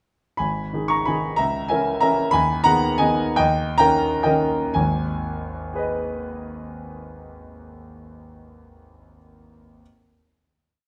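A clear concert grand piano opens the piece at 0.4 seconds, playing alone as a bittersweet classical waltz in G# minor, in 3/4 and tuned to A4 = 441 Hz. The melody moves in thirds above a waltz bass, and the tempo is freely rubato, ranging between 110 and 198 BPM. The harmony passes from G# minor through A# diminished over C# and G# minor over D# to a D#7 chord. From 1.9 seconds the playing slows, leading to a final G# minor chord at 4.8 seconds that rings on to close the piece. The piano sits up front in a moderate recital hall reverb, with deep bass, an open tone and short sustain, giving the whole a nostalgic feel.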